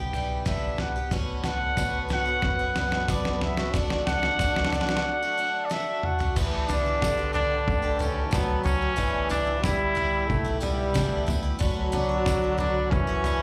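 This indie folk excerpt sounds like a live gig heard through a club PA, with little reverb and a warm, uplifting feel at 92 BPM in a straight 4/4. A mellow, punchy trumpet with a vintage tone and slapback echo carries the melody up front, while a picked twelve-string acoustic guitar adds bright, shimmering, octave-doubled accompaniment with a slightly boxy body. A woody pizzicato upright bass and a muffled, pitched-down, sampler-style drum kit with a thumpy kick sit underneath, the drums playing fills through much of the build-up before the second section arrives at 6.4 seconds. From 1.1 seconds a clear trombone with vibrato adds a second line, also touched by slapback echo, and a distant, very quiet brass ensemble holds sustained chords behind it. A jingly tambourine joins softly in the background at 1.8 seconds, as the harmony moves from Em7 through Bmadd9/D and D to Gadd9/D.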